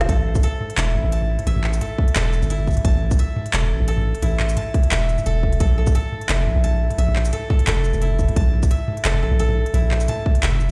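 Fingerpicked koto arpeggios with a dry, woody tone and tape echo open this tense, spacious half-time drum and bass excerpt at 174 BPM in A phrygian, over a deep, mellow, sine-like 808-style bass and a produced electronic kit with crisp hats, a woody snare, handclaps, shaker and toms re-recorded in a large room, while a hard-clipped, up-front electronic kick enters at 0.1 seconds as the harmony moves from A5 to Bb5 at 5.6 seconds, all heard in the stone-room reverb of a big sound system in a bare space, and the kick drops out at 10.4 seconds.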